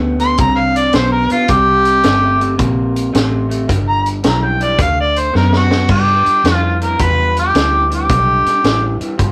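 A slightly broken-up, lo-fi electric guitar riff and a dark, round, foam-muted fingered bass open this gritty, laid-back electric blues shuffle in G mixolydian, swinging at 109 BPM. An up-front harmonica with overdrive, light vibrato and scooped notes carries a mellow, jazz-style solo through to 5.9 seconds, while a vintage drum kit with a high-tuned snare, punchy kick and rolled-off top plays crash, hi-hat, kick and snare, adding a fill from 5.3 to 5.9 seconds. Moderate reverb and a rough rehearsal-room sound frame this short cut from a longer piece.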